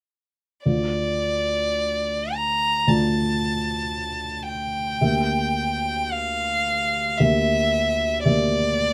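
Romantic classical duo in D minor at a slow, rubato 51-57 BPM, where a clear, smooth violin with vibrato carries a yearning, solemn melody up front over a dark, mellow, vintage-toned baby grand piano accompaniment, both sounding from 0.7 to 8.9 seconds in light reverb as the harmony moves from Dm to Em7b5/D at 5.0 seconds in this brief cut from a longer piece.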